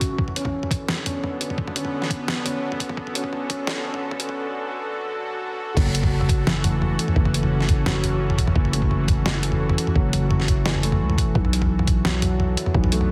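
A dark, cinematic half-time drum and bass excerpt at 172 BPM in F# minor, where a soft, felt-muted upright piano with audible action noise plays tape-echoed arpeggios under a filter sweep, beside a tense, nasal bowed-like drone with vibrato and sidechain pumping, over Bm7 and F#m7 chords. A gritty, pitched-down boom bap sampler-style kit with an up-front snare runs throughout, while a thumpy electronic kick drops out at 3.6 seconds. The build-up gives way to a drop at 5.8 seconds, where the kick returns and a growling, buzzy 808-style bass enters, all under a heavily compressed, high-passed radio sound with light reverb.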